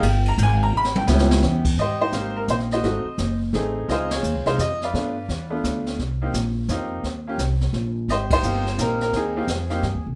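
A brilliant, up-front upright piano carries the melody and opens with a short solo passage in this playful, relaxed jazz trio waltz excerpt, swung in 3/4 over a thumpy pizzicato upright bass and a distant, roomy brushed drum kit with dark cymbals and a boomy kick that adds a fill at 0.7 seconds before the band hits accents at 4.1 and 8.3 seconds, all in a moderate studio reverb.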